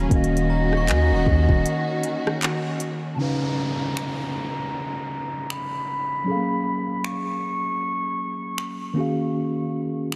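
A reedy, airy concert flute carries the melody from 0.1 s in this moody, late-night contemporary R&B excerpt at 78 BPM, its rolled-off tone trailing into diffuse delay over a worn, slightly out-of-tune tine electric piano and a soft, swung drum kit of finger snaps, handclaps, rim clicks, hi-hat and kick. A deep, decaying 808-style bass and lush, distant bowed strings open the piece alongside a faint, inharmonic FM chime, the bass dropping out at 1.6 s and the strings at 3.2 s, when an electronic downlifter and a filter sweep arrive. The chords move from Ebm11 through Db9 and Gbmaj9 back to Ebm11, all inside a dreamy mix soaked in huge reverb.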